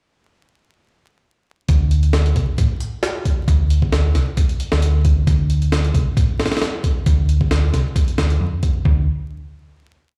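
Breakbeat with a funky, gritty mood, where a compressed sampler-style drum kit with a thumpy kick and high-tuned snare plays a looped, edited break up front alongside a dark, round, punchy hollow-body electric bass carrying a dub-style line, both kicking in at 1.7 seconds and heard through vinyl crackle and the big-system boom of a bare room before a final note rings out from 8.9 seconds.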